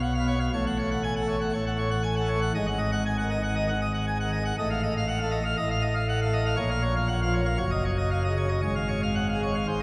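A straight 4/4 pulse at 118 BPM drives this majestic classical organ toccata, a brief 9.8-second passage cut from a longer piece. A solo pipe organ on full plenum sits up front, its mixtures giving a brilliant, baroque-voiced sound with audible chiff as it spans from Gb1 to Ab5 over chords moving from Db7/Cb through F7/A and Bbm to a close on Db/Ab. A wet church reverb with a 3.3-second decay surrounds the instrument with a grand, resonant space.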